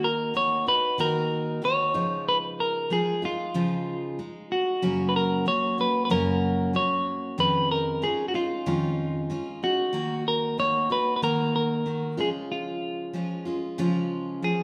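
An easy-going, carefree slice of acoustic pop in a straight 4/4, cut from a longer piece, with a bright, twangy clean electric guitar carrying the melody over the full-bodied picked accompaniment of a steel-string dreadnought acoustic guitar, both sitting up front across the whole 14.6 seconds. The chords move from D#m through C#add9 and F# before settling back toward C#, and the pair sound like a band playing live together in one room, bathed in a lush large-studio reverb.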